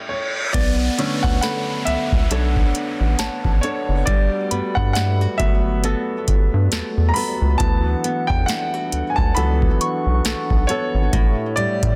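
A dense, heavily limited modern master with little reverb gives this moody, sensual contemporary R&B fragment, cut from a longer piece, a close and immediate sound over a swung sixteenth-note feel. It opens on a brief stop filled by an electronic reverse cymbal and downlifter, which carries on as the full arrangement arrives at 0.5 seconds. Up front, an overdriven analog drum machine, re-recorded in a small room, thumps with a deep kick, crisp snare and metallic hats, joined by a rubbery, hollow square-wave bass with a resonant filter pluck. A clear, intimate baby grand piano takes a solo from 0.5 seconds, its audible action noise and short sustain adding a natural touch. Around it, a fingerpicked flamenco guitar plays arpeggios with finger squeak and digital delay, a glass harmonica holds pure, ethereal chords with slow attack and beating, and a mellow FM synth bell with chorus and delay sits in the background. 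The harmony moves through Bm9, Gmaj9, D6 and A7.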